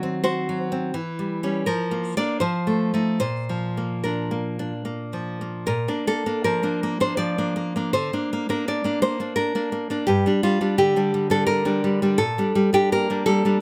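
A lone nylon-string guitar opens on a diminished chord over Eb, fingerpicked with a bright, classical tone and set up front in the sound. This short passage, cut from a longer romantic piece in triple time, carries a passionate yet melancholic mood, its pulse breathing freely with rubato. The harmony moves through Em6 and Bb over F to an F7 that resolves on Bb at 3.2 seconds. A second passage begins at 5.7 seconds and turns toward shadow, passing from Bb over D to G minor at 10.1 seconds before settling on G minor over Bb. The close, detailed recording has little reverb, so each plucked note and the finger squeak come through with intimate clarity across a range from G2 to D5.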